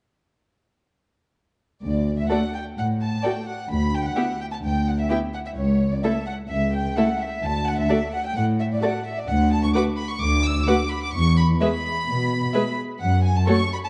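A dark, warm production with moderate scoring-stage reverb frames this cheerful, graceful classical-period orchestral movement in D major, taken at a quick 129 BPM with rubato and cut from a longer piece, where an up-front violin section sings a high sul tasto melody with light vibrato from 1.8 s over a woody, bowed cello bass, while a second violin line and an intimate viola accompaniment enter at 2.3 s and the chords move from D through E to close on F sharp minor near 13.0 s.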